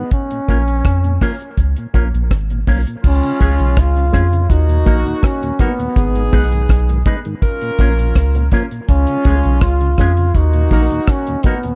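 A clear trombone carries the melody with vibrato and a smooth top, its phrases trailing into dub echo in this laid-back, meditative roots reggae section cut from a longer piece. Up front, a soft, round sub bass with a fast attack and sustained tone sits beside a dry acoustic drum kit whose tight kick, hi-hat, rim click and dark crash cymbal keep a straight 4/4 feel. A bright, twangy electric guitar, clean and compressed, is picked through an envelope filter and fed into the echo, while a mellow tonewheel organ hangs in the background with chorus vibrato and a slow rotary speaker. At 3.0 seconds a tight, pop-style horn section joins as a second line, also sent into dub echo, as the chords move through A#m, C#, D#m and G#m. A small room ambience gives the production a warm, shadowed cast.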